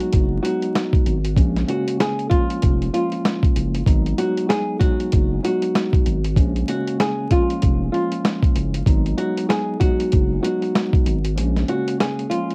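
Reflective and dark, this boom-bap hip-hop excerpt moves at 96 BPM in 4/4 with a 60% swing on the sixteenths, centred in G# dorian as the chords shift between G#m7 and A#m7. A dusty soul sampler-style drum kit sits up front, gritty and compressed, with a thumpy kick, a medium-tuned snare, rim clicks and hi-hat carrying a tape-warm character. A deep, thick sine sub bass, saturated with a fast attack and sustained notes, also sits forward, entering at 0.1 seconds and dropping out at 11.6 seconds as a short break arrives at 11.4 seconds. A mellow tine electric piano, clean and heard through its built-in speakers, supplies the accompaniment, shaped by high-pass and low-pass filtering and cassette tape colouring. Over it, a fingerpicked acoustic flamenco guitar with a dark tone carries a narrow melody, filtered and passed through cassette tape and tape echo. The dry sound has little reverb, with the intimacy of a home cassette recording and a layer of vinyl crackle.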